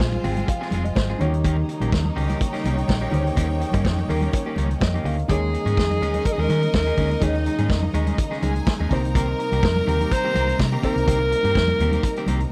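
A dry, close 1970s-style studio sound frames this driving, danceable disco cut at 125 BPM, where a saturated, gritty vintage drum kit and a dark, round hollow-body electric bass sit up front, with very quiet bright congas, a slightly broken-up picked electric guitar and a grand piano in the background adding fills at the start and again just before 5.3 s. Two lush bowed string sections fill the middle, one carrying a focused second line and the other holding very quiet, smooth-topped sustained chords. At 5.3 s a breathy, whispered alto saxophone takes the melody with intimate jazz-style vibrato as the harmony shifts from Eb7sus4 to Cm7.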